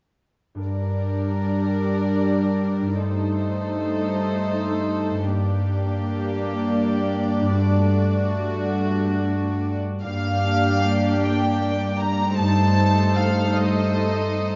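A dusky, reverberant scoring-stage sound frames this bittersweet, longing cinematic film score in G minor, moving rubato at 51 BPM in 6/8: a bright, ringing concert harp arpeggiates from 0.5 s over a dark, intimate viola section accompaniment, a soft-attack cello section bass on G2, and a pure, floating sul tasto violin section second line, before a second violin section joins up front with the melody at 10.0 s.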